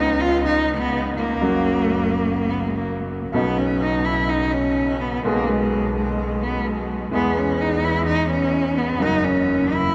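A rubato 4/4 pulse around 126 BPM carries this passionate, dramatic tango fragment in B major, where an up-front, rich cello sings a bowed, expressive solo with vibrato and portamento. A bright, woody upright piano with long sustain accompanies it over chords moving from C#7 through F#, Badd9, G#m/B and E, while a dark bowed double bass adds its own vibrato and soft-attack glides underneath, all bathed in the cavernous reverb of a church or concert hall.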